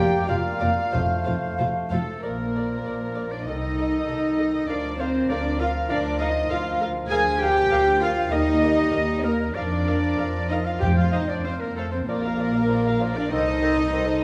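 The full orchestra opens at once, with round, soft-mallet timpani strokes under the first chords before the drums fall silent at 1.9 seconds, returning only briefly between 10.8 and 11.7 seconds. This is a lively, graceful classical-period movement in four, taken with a flexible, rubato feel, and the fragment comes from a longer work. A chamber violin section carries the melody in the background, bowed sul tasto with light vibrato and soft attacks for an intimate, close tone. A second violin line, a bright solo oboe, a pure, hollow flute and a very quiet, smooth clarinet add companion lines in the same register. Beneath them, a dark bassoon and a viola section supply accompaniment, a present French horn section holds sustained chords, and the cello and double bass sections anchor the bass, with the cellos sitting most prominently in the texture. The whole ensemble sounds from within a wet concert hall reverb.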